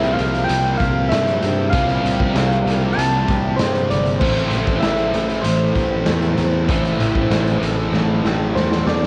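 A hazy, blissful home recording on cassette, lightly touched with reverb, opens this rock fragment in the shoegaze and dream pop vein, where a raw, saturated garage drum kit sits up front with a punchy kick and a rolled-off top, and a growly fuzz fingered bass rumbles beneath. A round, gentle FM synth lead with chorus, vibrato and analog delay carries the melody over a very quiet swirling, detuned phased analog pad, while a thick fuzz guitar and a double-tracked overdriven guitar with tremolo churn in the background, joined by a very quiet biting overdriven riff and faint lo-fi arpeggios from a guitar through a small old amp. The harmony moves from C7sus4 to Am7 at 4.2 seconds, and a drum fill closes the passage from 7.9 seconds.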